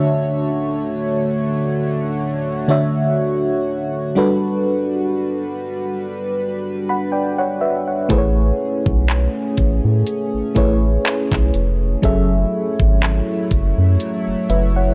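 At a slow 61 BPM in 4/4 with a light sixteenth-note swing, this tender, dreamy contemporary R&B excerpt in A major opens with a tremolo FM electric piano, full-bodied with a noise layer, over a shimmering, retro pulse-width pad whose chorus and sidechain pumping give it gentle motion through Dmaj7 and Gmaj7. At 8.1 s, as the harmony moves to Amaj7 and then F#m7, a round, deep analog bass arrives alongside an electronic trap kit of knocking kick, bright hi-hats and handclaps. The dry, gritty recording keeps every part close and up front.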